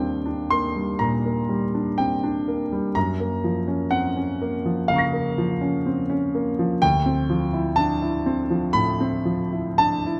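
Luminous and serene, this short fragment of impressionist classical music features a solo concert grand piano played with an unhurried rubato feel in 4/4, drifting from Ebmaj7 to Gbmaj7 and settling on Dm9. The piano sits up front with a warm, smooth, vintage character and deep bass, spanning D2 to Bb6. Close, detailed microphones capture its sound, wrapped in a light reverb.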